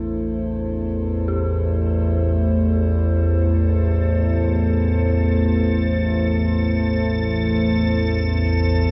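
A resonant analog drone sits up front in the low register, its sawtooth and pulse-wave tone slowly evolving under chorus as it fades in from the start of this dark ambient excerpt. Above it, a deep, moody analog pad holds sustained A minor chords built from detuned square, saw and triangle waves with a sub octave and a moving notch, also fading in and carrying chorus and shimmer reverb. At 3.6 seconds an icy, crystalline glass pad enters on a single high note, airy and bright with a noise layer, its own reverb and shimmer. Threaded among these in the middle register, a very quiet detuned FM bell plays eerie, inharmonic arpeggios with a fast attack and decaying tail. Everything sits in a vast, echoing cathedral-like space with a long reverb tail, creating a desolate, cavernous mood that runs to 8.9 seconds.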